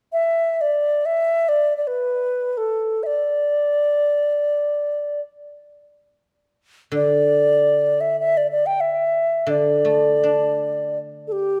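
A bright, reedy low xiao carries the melody from the outset, its end-blown bamboo tone pure and straight, tongued and placed up front, in this pastoral, graceful passage of Chinese traditional chamber music in free time and D zhi mode. At 6.9 s a guzheng joins in accompaniment, its fingerpicked strings ringing and silvery in a lower register. A moderate concert hall reverb surrounds both instruments in this short excerpt from a longer piece.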